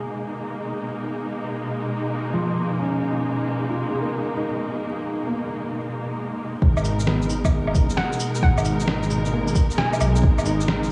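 Ghostly and rainy, this short future garage passage moves at 133 BPM in 4/4 with a strong 16th-note swing, resting on a G#madd9 chord in G# dorian. It opens on a soft, felt-muted upright piano set in the background, its action noise audible as a filter sweep passes over it through the first 6.6 seconds, alongside a lush, bowed studio string section holding sustained chords up front with expressive vibrato. Both carry sidechain pumping, and the piano also runs through a low-pass filter and analog delay. At 6.6 seconds a deep, up-front electronic kick arrives with a dark detuned saw bass that rumbles and beats, thickened by tube saturation, while muffled, tape-tinted shaker, woodblock, cabasa and snare join just after under low-pass filtering. A hollow square-wave pluck enters at 8.0 seconds with a brief, bouncy melody high in the register, coloured by chorus, cassette tape character and analog delay. 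A lush hall reverb with digital ambience wraps the whole passage, which is cut from a longer piece.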